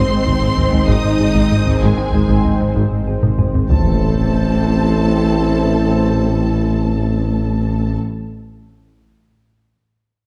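Cinematic hybrid orchestral and electronic film score in 6/8, relentless and tense, with a lush, vibrato-rich violin melody over a second violin line, viola accompaniment with portamento, a shimmering, detuned pulse-width pad and sustained mellow French horn chords. A tine-like thumb-piano synth pluck plays arpeggios and a round analog bass drives a riff, both until 3.6 seconds, while a deep sine sub bass, very quiet cello and woody double bass sections, and a tuba anchor the low end. Close, dry taiko with heavy sticks leads into a fill before a huge, dark impact lands at 3.7 seconds as the harmony shifts, all set in a dark production with a reverberant scoring-stage ambience.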